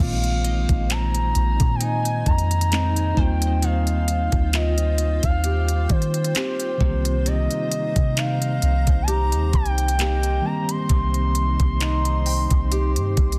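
Contemporary R&B in C minor at a slow 66 BPM with a lightly swung sixteenth-note feel, this late-night, longing excerpt drifts through Bb9sus4, Eb69 and Cm7 chords. A smooth, gliding sine lead carries the melody with portamento and vibrato, coated in chorus and tape echo. Underneath, a mellow, clean tine electric piano accompanies while a fingerpicked steel-string acoustic guitar plays arpeggios. A soft, round 808-style bass sits deep and up front beside a smooth R&B drum kit that enters at 0.2 seconds with a knocking kick, smooth hi-hats and handclaps. Behind them, a cloudy, evolving granular pad holds blurred chords in its own reverb, and from 0.4 seconds a very quiet, crystalline wavetable pluck adds a detuned, filter-swept shimmer. The mix is dense and heavily limited, set in a digital ambience.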